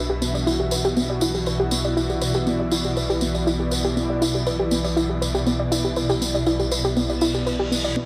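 Melodic techno at 120 BPM in 4/4, this dark, dramatic passage is cut from a longer piece and rests on a single Em7/B chord. A soft, round pluck carries chorused, tape-echoed arpeggios from the opening, while a menacing detuned saw bass holds a low B beneath it, its filter swelling and its tone saturated. An ethereal, airy texture pad with ensemble chorus and a swarming, granular drone set far back in the mix are also present from the start, and a smooth analog pad enters at 0.3 seconds with mellow sustained chords. A jingly, distant tambourine plays from 0.2 seconds, and a reverse cymbal and electronic riser rise in at 7.1 seconds to close the passage. The lush hall reverb contrasts with the dry, gritty character of the hardware recording and its transformer saturation.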